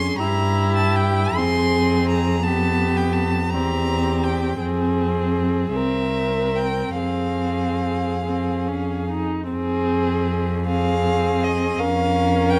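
In a rubato 6/8 at 46-58 BPM, this slow, elegiac movement for string quartet in F minor unfolds as a yearning fragment of a longer piece, with all four players bowing together for its 12.6 seconds. A rich, focused first violin with vibrato sings the melody above a dark, woody second violin line, while the viola adds expressive accompaniment coloured by portamento. Up front, the cello's intimate sul tasto bass has a soft attack and airy bow, all set in a moderate recital hall reverb captured with close, detailed microphones.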